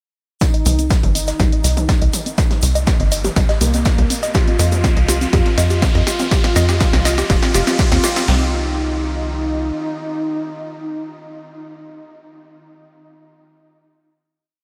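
A straight four-on-the-floor kick from a punchy, tape-warm analog drum machine drives this dramatic, cinematic melodic techno build, joined by a second machine playing programmed hats, toms and a backbeat snare, a very quiet looped tambourine-and-snare breakbeat, and grainy hand-played shaker sixteenths, while a tight, dotted-rhythm sequencer bass pumps beneath. A warbly, lo-fi pluck cycles a three-step arpeggio that drifts against the bar under a filter sweep, a riser enters at 2.1 s to push the tension, and a thick, detuned unison lead carries a repeating riff with vibrato through a diffuse ambient delay. The drums drop out at 8.3 s as the music lands on a final chord in a dreamy mix soaked in huge reverb, with the lead sustaining until 12.0 s.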